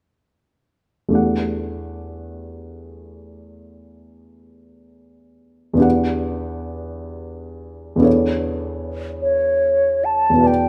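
A rubato 6/8 pulse drifts freely through this mysterious, hazy impressionist duo, cut from a longer classical piece. An intimate baby grand with audible action noise and short sustain opens at 1.1 s, moving through Em11, Em9 and Bm9/E. A pure, mellow silver flute with vibrato and a soft attack enters at 9.2 s, both instruments up front in moderate recital hall reverb.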